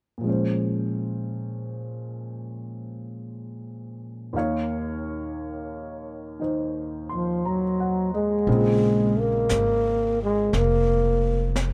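Smoky and wistful, this slow 58 BPM jazz ballad fragment in Bb minor opens on an intimate baby grand piano with long sustain and audible action noise, moving from Bbm9 to Eb5, before a mellow, breathy trombone with light vibrato sings a whispered, distant-sounding melody from 7.1 seconds, joined at 8.5 seconds by woody pizzicato upright bass and a softly brushed kit with a high-tuned snare, all captured in a dark, dry production.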